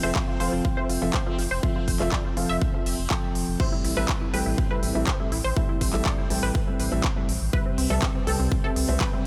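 A straight pulse drives this dreamy progressive house fragment, with a punchy, up-front electronic kick and a big-room dance kit of crash cymbal, handclaps and crisp hi-hats arriving at 0.2 s, both layered, tape-tinted and set in a small room ambience. Underneath, a round analog bass sits deep and dark, its sine-like tone carrying a slightly nasal edge and a fast attack before it sustains, pumping against the sidechain. A lush, bright unison pluck of detuned sawtooths spins arpeggios through a filter sweep and phaser, softened by cassette tape grit and trailed by tape echo. A felt-muted upright piano adds soft, intimate stabs with audible action noise, also pumping and echoing, while a reversed, granular texture swells in the background with its own built-in reverb. The harmony moves from Fmaj7 to Am7 at 3.6 s and Cmaj7 at 7.5 s under a light overall reverb, giving the short cut a hazy yet propulsive feel.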